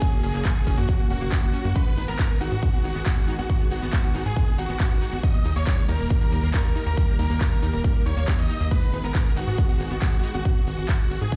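A punchy, up-front electronic kick and a big-room dance kit with metallic hats, handclaps and crash cymbal open this driving, euphoric uplifting trance excerpt at 138 BPM in G# minor. They arrive alongside a huge, detuned supersaw lead carrying the melody through digital delay, a lush supersaw pad with 12-bit sampler grit holding chords in the background, and a round analog pluck playing arpeggios with chorus and delay. A tight sawtooth sequencer bass joins at 0.2 seconds, and a very quiet, intimate concert grand piano with audible action noise adds a high second line until 10.6 seconds, over chords moving F#, G#m, D# and back to G#m, while sidechain pumping runs through the lead, pad, pluck, bass, hats and cymbals, all heard as if played on a big sound system in a bare room.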